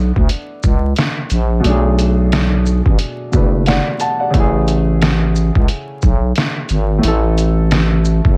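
A swung 89 BPM boom-bap hip-hop groove in F# minor sets a tough, dark mood in this short excerpt, where a growling, thick FM bass and a smooth, vintage filtered grand piano moving from Bm7 to a rootless F#m7 open the passage, joined at 0.2 seconds by a muffled, pitched-down sampler-style drum kit with thumpy kick, medium-tuned snare, hi-hat and shaker, all set in a small, echo-heavy room with vinyl crackle.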